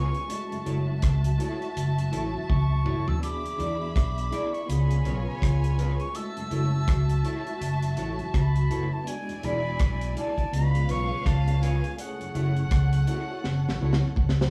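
A reedy, airy flute carries a bittersweet, longing melody over a lovers rock reggae groove at 82 BPM in F# minor, joined by a sul tasto string section on a second line, a worn tine electric piano with tremolo and tape echo, a very quiet organ on slow rotary speaker, slightly broken-up guitar stabs in spring reverb, a round, foam-muted bass and a dark, dry drum kit up front with fills at 2.5 and 13.4 seconds, all moving through F#m7, E7 and C#7 in a live-room sound.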